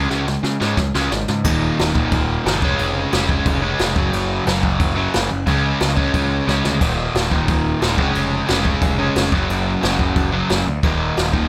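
A crunchy, double-tracked overdriven guitar sits up front, driving a riff through a short, aggressive and angry punk rock excerpt at 179 BPM in a straight 4/4. A growling picked electric bass, bright and overdriven, runs beneath it, while a jazz brush drum kit plays with brushes, its dark cymbals, medium-tuned snare and boomy kick sounding distant and roomy yet placed up front. The drums open on a fill from 0.1 seconds, and another fill lands at 6.5 seconds. The chords move through power shapes on Db, Eb and Gb, with a Db over F passing between them. Light reverb gives the whole a sense of space, and the clip is cut from a longer piece.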